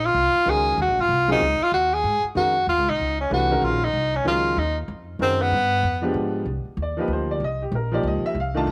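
This jazz waltz moves at a brisk 190 BPM in 3/4, with a swung eighth-note feel and a searching, intense mood in E-flat dorian. A tenor saxophone carries the melody from the start until 6.2 seconds, its clear tone shaded with vibrato, soft attacks and scooped notes, placed up front yet with a distant, roomy quality. An acoustic upright bass, plucked on steel strings, holds down the low end with a dark, woody sound throughout. An upright piano joins at 0.5 seconds with open, up-front accompaniment, playing over minor eleventh, suspended and altered dominant harmonies before the music shifts to a C minor ninth near the close. Light reverb and small room ambience surround the trio, and the recording is cut from a longer piece.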